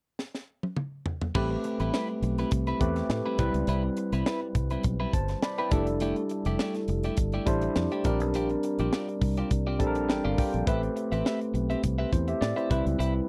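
A gritty, barky overdriven tine electric piano with lush chorus comps through this breezy, urban slice of polished 1980s jazz-funk pop at 103 BPM with a light swing, playing Am9, Cmaj7, Fmaj13 and Bb69 chords and adding a fill at 9.5 seconds, after a tight funk drum kit with a high-tuned snare opens with a fill at 0.2 seconds, and a round, dark fingered electric bass and a clean, compressed picked guitar riff with subtle chorus enter alongside the piano at 1.3 seconds, in a dry, close studio sound.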